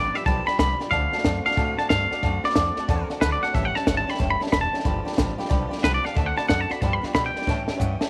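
Rockabilly with a rollicking, retro feel at 183 BPM in a swung 4/4, led by a bright, twangy electric guitar melody with subtle chorus and tape echo up front, backed by a full-bodied picked steel-string acoustic guitar, a boxy upright piano, a woody, thumpy pizzicato upright bass and a compact cocktail kit with a punchy kick and high-tuned snare that closes this excerpt with a drum fill at 7.5 seconds over a G7, D7 and A7 progression in light reverb.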